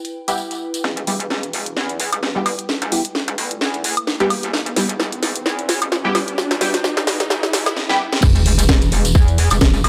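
A short cut from a bass house track at 130 BPM in E minor opens with overdriven house drums with a cracking snare, a jingly tambourine and a faint, warbling lo-fi pad, then builds from 0.8 seconds as a nasal, band-passed chord stab with phaser and delay pumps against a metallic, saturated wobble bass, a background riser climbs, and at 8.2 seconds a tight, up-front electronic kick arrives for an aggressive, bouncy drop.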